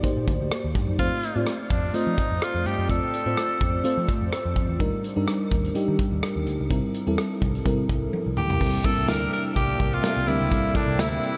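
A dreamy, reverb-soaked mix with a long, hazy tail frames this glossy, nostalgic slice of 1980s-style pop, moving at 126 BPM in 4/4 with a light sixteenth-note swing. An up-front FM electric piano layered with a soft pad carries the accompaniment throughout, its lush, detuned tone colored by chorus and tremolo over chords of Ebmaj7, F and C7. A modern studio drum kit with bright cymbals, a tight kick and a medium-tuned snare drives the groove alongside a dark, foam-muted picked electric bass with a round, amped tone. A raspy tenor saxophone takes the melody from 1.0 to 3.8 seconds and returns at 8.4 seconds over a drum fill, its gritty, forceful voice carrying a light vibrato and a diffuse ambient delay. At 8.6 seconds a shimmering, chorused pulse-width pad slips into the background with sustained retro chords as the piece moves into a new section.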